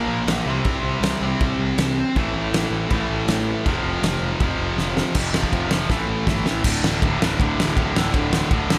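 A sludgy, double-tracked distorted guitar leads this aggressive, urgent punk rock excerpt at 160 BPM, its bright, overdriven riff sitting up front. It is joined by a growly fuzz-driven picked electric bass and a loose indie drum kit with a fat snare, punchy kick and dark cymbals in a pumping studio room. The band opens in half time until 5.2 seconds, with drum fills leading into new sections there and at 6.6 seconds, all within a lush hall reverb that gives a big arena sound.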